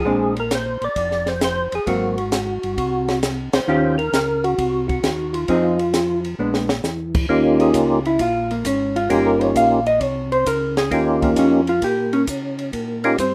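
A swung eighth-note feel in four drives this greasy soul jazz organ trio, heard as an excerpt cut from a longer piece. A fat, percussive tonewheel organ carries the melody up front, its key click and third-harmonic percussion colored by chorus vibrato and a slow rotary speaker. Beneath it, a second tonewheel organ lays down a smooth, clean bass line with the same vibrato and slow rotary swirl. A dark, picked hollow-body electric guitar accompanies over dominant ninth and diminished changes, then steps forward for a solo from 7.3 seconds, while a compact, dry acoustic kit of punchy kick, high-tuned snare, hi-hat, and dark ride and crash cymbals keeps the swing, joining the band for an accent at 3.4 seconds and playing a fill at 6.4 seconds. A small room adds a touch of reverb to a rough home-demo mix.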